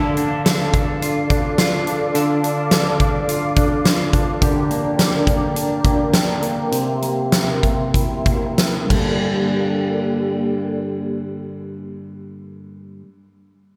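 Dream pop excerpt with a hazy, melancholic mood, where a detuned sawtooth pad with soft attack holds chorused chords beneath twangy, slightly broken-up fingered guitar arpeggios carrying subtle chorus and digital delay, while a huge arena drum kit with a fat snare, punchy kick and gated reverb sits up front until 9.1 seconds as a filter sweep runs and the tempo slows, all set in a moderate plate reverb with bright 1980s-style digital production.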